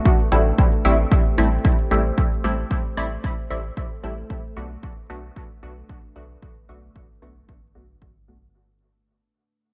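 A muted, detuned sawtooth chord stab sits up front in this cavernous dub techno fragment at 113 BPM, its filter pluck softened by chorus, phaser and dub echo as it moves from Am7 to Bm7 at 4.3 seconds. A punchy, tape-warm electronic kick and a round triangle-and-square sub bass drive the straight 4/4 pulse, while a small-room electronic hi-hat lies low-pass filtered in the background. Beneath them a dark, slow-attack ambient pad with a sub octave and built-in reverb breathes with sidechain pumping, all wrapped in vinyl crackle, faint mains hum, light reverb and digital ambience as the cut fades out over its 8.5 seconds.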